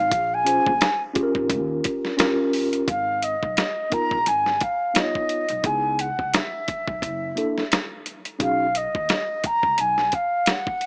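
An airy concert flute with a soft attack and straight tone carries the melody of this nocturnal, mellow jazz-hop cut, taking a solo in the opening 2.9 seconds before the harmony moves into a new section. Underneath, a gritty, compressed sampler-style drum kit with vintage 12-bit grit, a thumpy kick and a medium-tuned snare swings on the 16ths, while a woody pizzicato upright bass on gut strings holds the low end. A clean tine electric piano, heard through its built-in speakers, adds mellow chords such as A#m9 and C#m9 from 0.4 to 8.7 seconds, all set in a small room with light reverb and a small-speaker sound.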